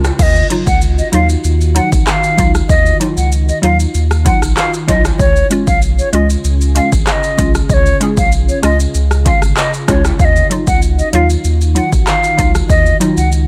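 Dancehall at 96 BPM in Eb minor, this hypnotic, sultry passage is cut from a longer piece and moves through Ebmadd9, Db and back to Ebmadd9. A punchy, overdriven deep house drum kit sits up front with kick, handclaps, rim click, shaker, crash and metallic hi-hats, while a round sine sub bass holds the low end from Ab1 to Eb2. A glassy, ethereal FM pad sustains chords with a slow attack and long release, colored by ensemble chorus, phaser, its own reverb and sidechain pumping. At 0.2 seconds a bright, airy wooden flute enters with a tongued, straight-toned melody between Db5 and Ab5, close-miked and trailed by digital delay. A hollow, bouncy square-wave pluck with detuning, a noise layer and chorus adds accompaniment from 0.5 seconds. Distant timbales and maracas sit in the background in a large room, though the mix as a whole stays fairly dry.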